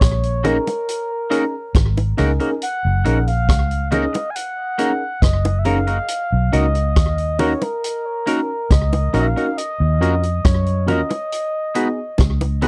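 A reedy, woody FM lead opens this tender, sweet lovers rock reggae excerpt at 69 BPM in F# major, carrying the melody with chorus and tape echo over a dark, foam-muted fingered bass and a punchy vintage drum kit of kick, hi-hat and rim click. At 0.4 seconds a clean tine electric piano joins with slapback echo, alongside bright, twangy electric guitar stabs with subtle chorus and round, low-tuned bongos played with hard hands. The bass, drums and electric piano sit up front, while the lead, guitar and bongos stay a touch further back. The harmony settles on F#6 before moving through a rootless Bmaj7, D#m7 and C#9sus4 in the second half. The sound is dry and close in a 1970s studio style, the drums with a natural room tone and a rolled-off top.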